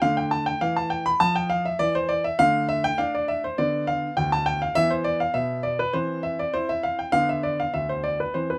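A classical-period piano sonatina excerpt, serious and restless, moving at 101 BPM in 4/4 with a rubato feel and tuned to A4 = 443 Hz. A baby grand piano plays solo throughout its 8.6 seconds, spanning D2 to B5 with a natural, up-front tone, captured by close, detailed microphones in light reverb. The harmony centres on D minor, passing through Dm6, E5 and C/E before settling on Dm13.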